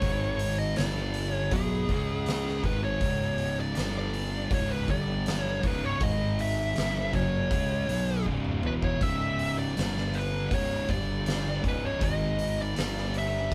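A brooding, ominous stoner and doom metal passage at 80 BPM opens with a dark fuzz lead guitar carrying the melody over a double-tracked, distorted fuzz guitar riff built on power chords around G#5, G5 and C#5, a growly, punchy overdriven fingered bass, and an oversized low-tuned drum kit with a boomy kick, fat snare and pumping stone-room ambience, all played live in one room, with a drum fill at 8.3 seconds.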